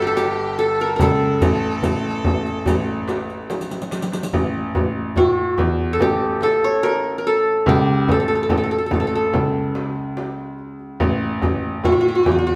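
A festive Turkish makam ensemble opens with a bright-edged, plectrum-plucked qanun carrying the melody up front, its triple strings ringing. Beneath it, a focused, bowed violin with vibrato traces a quieter second line, and a clear baby grand piano anchors the bass with a short, natural sustain. Darbuka, frame drum and riq join almost immediately. The darbuka sounds large and deep, with a clay shell and hard hands, set distant as if in a big space; the small frame drum is bright but very quiet; and the riq adds dark jingles heard close and dry. The violin drops out at 3.5 seconds as a drum fill arrives, and the riq stops soon after, leaving qanun, piano, darbuka and frame drum to carry the next passage until the violin returns briefly near 11.8 seconds, before this fragment of a longer piece cuts off. The band plays live together in a reverberant stone room, giving the music a warm, celebratory mood.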